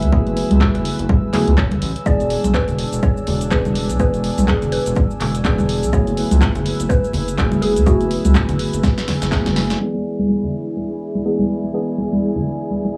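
Moody and deep, this deep house excerpt moves at 124 BPM in 4/4 with a swung sixteenth-note feel, circling between F#m11 and E7. An up-front, tape-warm electronic kick and a punchy analog drum machine with handclaps, hi-hat, shaker and snare under low-pass filtering drive the groove, while close, dry congas with hard hands sit in the background. A round, dark analog bass pumps against the kick, joined by hollow, organ-like stabs with chorus and tape echo and a smooth, warbling analog pad holding sustained chords. A woody, mallet-like FM pluck carries the melody in the background until about 9.5 seconds, and a drum fill leads to a band accent at 9.7 seconds. From 9.8 seconds the drums and bass drop away as a filter sweep runs through the closing section on E7, where a silky string machine with ensemble chorus enters softly in the background at 10.1 seconds, all set in a light, small-room reverb.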